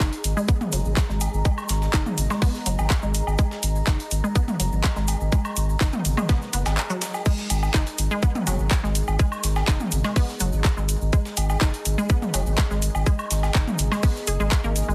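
A straight 4/4 pulse at 124 BPM drives this clinical, cool minimal techno excerpt, where a tight, up-front electronic kick sits with a deep, saturated sub bass that pumps beneath a squelchy, resonant blip pluck riff with chorus and dub echo, layered with garage claps and metallic hats, gritty tape-toned breakbeat snare and shaker, a grainy distant egg shaker, tom and woodblock hits through digital delay, a moody detuned pad, and a faint swarming granular drone that stops at 7.3 seconds as the drop arrives.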